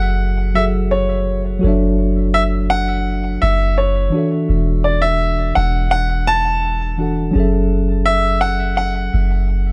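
A straight 4/4 pulse at 84 BPM sets an unhurried, sensual R&B pace in F# minor, with a mood of longing throughout this short fragment cut from a longer piece. A soft 808-style bass sits deep and up front between E1 and F#1, its round, sine-like tone striking with a fast attack and then decaying into a dark low end. A mellow tine electric piano supplies the accompaniment from E3 to F#5, its worn, slightly out-of-tune character heard clean and direct. Above it, a baby grand piano carries the melody between C#5 and A5 with a natural, up-front warmth, touched by tape echo. The harmony moves from F#m9 through Dmaj9/F# and then E9sus4 at 4.1 seconds, returning to F#m9 at 7.3 seconds, inside a small room ambience.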